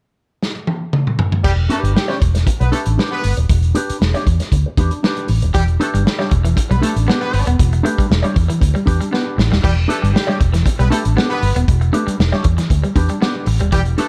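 A round, foam-muted fingered bass sits up front in this cool, driving funk cut, arriving at 1.4 seconds with a horn section on an Em7 after a short opening drum fill. The vintage kit is punchy and mid-forward with dark cymbals and a second fill at 9.1 seconds, while a bright, clean guitar through an envelope filter supplies accompaniment and a twangy guitar at the edge of break-up adds a riff from 5.5 seconds. Distant, loose horns with vibrato carry a second line, and the small room lends the whole production a warm character.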